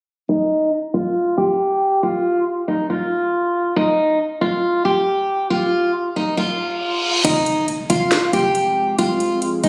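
A picked steel-string acoustic guitar sits up front in this dark, brooding trap excerpt at 138 BPM in half-time, playing a filtered, delayed melody in F minor from 0.3 s while a filter sweep moves across its tone and a reverse cymbal rises into an electronic impact at 7.2 s. There the trap kit's sharp snare and metallic hats arrive with 12-bit sampler grit alongside a short, punchy 808-style bass in the background, soon joined by a breathy, reedy concert flute with vibrato and delay and a deep, detuned sawtooth pad with chorus and slow attack on a sustained F minor chord. The whole piece sits in moderate digital stage reverb with the compressed, roomy character of a phone recording.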